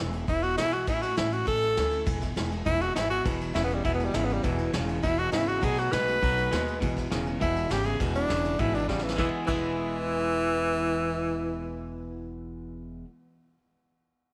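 Retro and upbeat, this rockabilly excerpt drives along at 202 BPM in a straight 4/4, rooted in E major and moving through E, A and B7 changes. A clear, close-miked tenor saxophone carries the melody up front with vibrato and a punchy pop-style delivery, while a woody, growly upright bass thumps out pizzicato lines beneath it. A vintage brush kit with dark cymbals, a medium-tuned snare and a punchy kick keeps time in a natural studio room, dropping a fill at 8.9 seconds before falling silent at 9.6 seconds. A clean, twangy electric guitar joins at 3.2 seconds with a picked riff, and a very quiet, bright dreadnought acoustic guitar fills in picked accompaniment, its finger squeak just audible. An echo chamber reverb lends the whole mix a period glow as the passage moves through three short sections.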